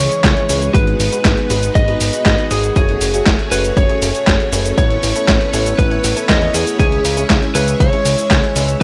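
Italo disco at 119 BPM in C# minor, nostalgic and bittersweet, built on a fat, detuned sawtooth bass with tube saturation and a lush string machine whose ensemble chorus carries sustained chords from C#m through G#m7, F#madd9 and Aadd9. A slightly broken-up electric lead guitar plays the melody through analog delay, while a dark, worn grand piano adds stabs in the background, its action noise audible. The gritty sampler-style kit of snare, hi-hat, handclaps and cabasa sits up front with an overdriven, punchy electronic kick in a small room, the whole cut dry and tape-dusted like a cassette.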